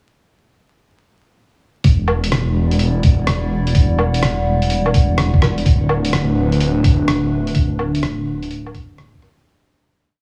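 Heavily compressed, radio-like sound with vinyl crackle, small-room ambience and light digital reverb gives this future garage piece in E minor at 126 BPM a ghostly, rainy mood, its 16ths swung in a two-step feel. From 1.8 seconds, a muffled, thumpy, tape-warm kick and a pitched-down, sampler-style kit of closed hi-hat, rim click and low woodblock skitter in a shuffled beat under a menacing, detuned, saturated sawtooth bass that holds its root up front with a filter swell and sidechain pumping. A nostalgic, warbling, chorused pad of detuned square and triangle tones sustains mellow chords moving from Em9 to D6 before the piece fades out from 6.9 seconds.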